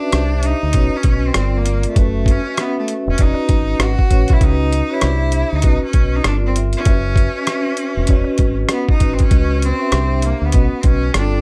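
Jazz-hop with a smooth, relaxed swing, this short cut from a longer piece sets a bright, biting bowed cello melody with a slapback echo, heard at a distance, over a ringing, metallic vibraphone played with medium hard mallets and a slow motor vibrato. Up front, a deep, round dub-style fingered electric bass and a gritty, compressed boom bap sampler kit with a thumpy kick, hi-hat and rim click carry the groove. The dry mix moves through chords like Cadd9, Gm7 and Emaj7.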